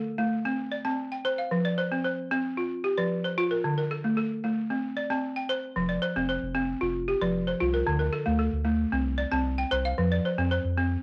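Flowing and hypnotic, this short excerpt of West African traditional xylophone music in F major at 113 BPM opens with a woody, buzzing balafon played up front with hard rubber mallets, its arpeggios carrying a cassette-tape tint, before a deep, round dub sub bass enters softly underneath at 5.8 seconds, all set in a wet studio reverb with the intimate feel of a home recording on cassette.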